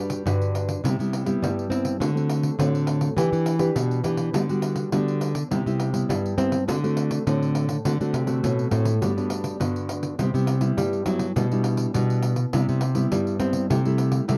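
Samba and choro in G major at 103 BPM, this festive, playful excerpt pairs an up-front fingerpicked nylon-string guitar accompaniment with a thumb-plucked nylon-string guitar bass line moving through chords like Gmaj7, Cmaj7 and D7, while a jingly, compressed, saturated pandeiro struck with hard hands joins at 0.1 seconds, all captured in a dry, close 1970s-style studio sound.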